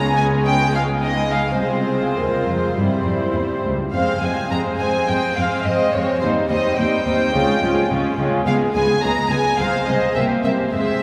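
In a flexible, rubato 4/4, this quick classical-period movement for string orchestra unfolds with a dramatic, restless character, heard as a passage taken from a longer piece. An up-front violin section carries the melody with a soft attack and a pure, floating tone played sul tasto, while a second violin section adds a darker, woody line from a more distant place, its vibrato lending a lush quality. The viola section fills in the accompaniment with a rich, close sound. Beneath them, the cello section holds the bass with light vibrato and an intimate, up-front presence, dropping out at 10.8 seconds just before the others finish at 11.0. The harmony circles through minor and major chords, ending on an open dominant seventh, and all four sections sit in the long, wet bloom of a cathedral-like reverb.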